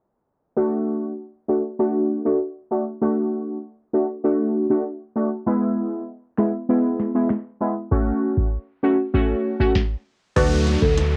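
Hypnotic and tough, this short dancehall cut from a longer piece opens at 0.6 seconds with a brassy, sawtooth synth brass stab that sits up front, punchy and evolving under a filter sweep, colored by chorus, phaser and cassette tape. The chords move from D to E to F#m before settling back on D. At 6.4 seconds a booming analog drum machine joins with a deep kick, crisp snare, metallic hi-hat, finger snaps and crash cymbal, roughened by vintage 12-bit sampler grit and tape. After a brief stop, the final moments from 10.4 seconds bring a round, dark FM bass on D2, a woody, rustic marimba line played with medium mallets, and a hollow, flute-like pad with warbling ensemble chorus and sidechain pumping in the background, along with an electronic downlifter, while very quiet, low-tuned bongos enter at 10.7 seconds. The sound is dry, lo-fi and band-limited, like a home recording on cassette with a low-pass filter.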